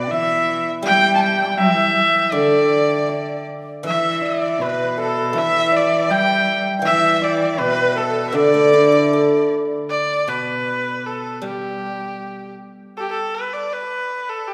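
Loosely rubato in two, this festive, graceful excerpt of Chinese traditional chamber music is led by a rich, earthy bowed erhu with light vibrato and portamento, sitting up front yet slightly distant in a wet concert hall reverb. A clear, close cello and an airy bamboo dizi, set in the background with a buzzing membrane, crisp chiff, vibrato and an unsteady tone, both stop at 9.5 seconds, while a shimmering hammered dulcimer rings on a little longer. A bright, silvery guzheng played with fingerpicks carries the accompaniment until 13.7 seconds, leaving the erhu to finish alone at 14.5 seconds.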